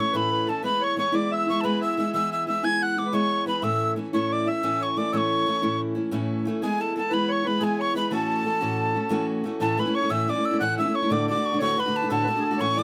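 Rolling along in a straight 9/8 at 120 BPM, this bright, rollicking Celtic folk tune in A major, tuned to A4 = 444 Hz and cut from a longer piece, puts an up-front breathy metal whistle on the melody with chiff, tongued attacks and expressive vibrato, while a reedy, hollow accordion carries a second line just beneath it and a warm, picked steel-string acoustic guitar, also up front, supplies the accompaniment, all captured with close, detailed microphones and light reverb as the tune moves into a new passage at 9.6 seconds.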